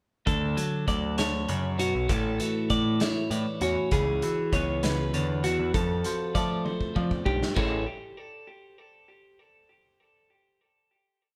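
Math rock with a midwest emo tint, this short, complete piece moves in an unhurried 6/8 and feels wistful yet bright. A clean electric guitar with a twangy, compressed edge picks a bright ostinato of arpeggios through tape echo, sitting up front, while a twelve-string electric guitar rolls fingerstyle arpeggios beneath it, its mellow chime colored by phaser. A growling picked bass, overdriven and punchy, drives a syncopated riff. A loose indie drum kit, acoustic and up front with dark cymbals, a tight kick, a rolled-off top and a pumping room sound, carries a 6/8 groove across kick, snare, hi-hat, toms and crash, breaking into a fill from 6.7 to 7.6 seconds. The band sounds as if playing live together in a moderate stone room, and the progression wanders from Dmaj7 through A, C#m7 and a striking F before settling on a final Amaj7 at 7.6 seconds to close.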